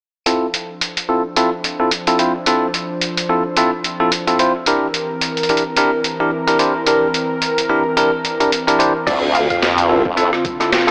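Glitch hop at 109 BPM in D minor, funky and playful, with a swung 16th-note feel and an AM radio haze over a lush hall reverb, cut from a longer piece. A smooth, detuned analog pad holds Dm7 and C7 chords under bell-like, bright tine electric piano stabs, both pumping against the sidechain and shaped by filter sweeps, while a gritty, pitched-down boom bap kit with a high-tuned snare, rim clicks, hi-hats and crash sits up front with overdrive. At 9.1 s the music returns to Dm7 as a wobbling, formant-swept bass, a thumpy overdriven kick in the background and a brief woody, wave-folded pluck melody with tape echo join in.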